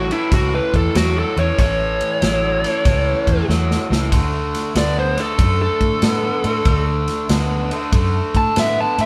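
This short excerpt sounds like a band playing live together in a moderate stone room, with a gritty, rollicking electric blues shuffle at 95 BPM in 4/4 and swung eighth notes. Up front, a biting, overdriven lead guitar takes a solo across the whole clip, picked in a range from E4 to A5. Beneath it, a second overdriven electric guitar plays a bright, picked riff from A2 to B3, touched with spring reverb. A vintage fingered bass, muted with foam, adds a dark, round low end from A1 to A2. The natural country drum kit comes in at 0.1 seconds with an airy, polished sound: a punchy kick, a medium-tuned snare and ride cymbal, plus a fill from 3.5 to 4.1 seconds as the harmony moves from A to D5.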